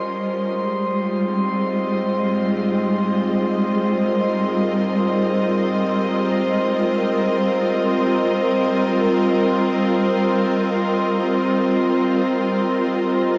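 Floating in free time, this short ambient piece, cut from a longer work, drifts with a serene, melancholic calm and tunes slightly low to A4 = 439 Hz. A muted studio string section sits up front, bowing sustained chords con sordino with a veiled, dark tone, vibrato and a smooth top across its low-to-high span. Above it, a glass harmonica adds a pure, ethereal texture in the upper register, its slow attacks sounding close-miked and full. Both parts play together for the whole 13.4 seconds, with the harmony resting on Abmaj9 before shifting to Ebadd9 at 9.0 seconds. The production is dark and warm, bathed in a wet shimmer reverb whose long tail stretches to 7.9 seconds.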